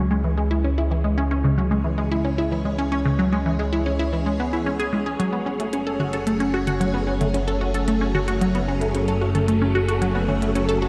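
A straight 4/4 pulse at 112 BPM drives this expansive, hypnotic piece of sequencer-driven space music in C# minor, cut from a longer work and bathed in a lush hall reverb with a dark, warm production. A juicy, squelchy blip pluck riff sits bright and up front with phaser and delay, over a fat, saturated analog bass and a swirling, vintage string machine that fades in with chorus and phaser on sustained chords. At 5.2 seconds the harmony shifts from C#m to F#madd9 and a minimal electronic kit of clicky hi-hats and toms enters with delay.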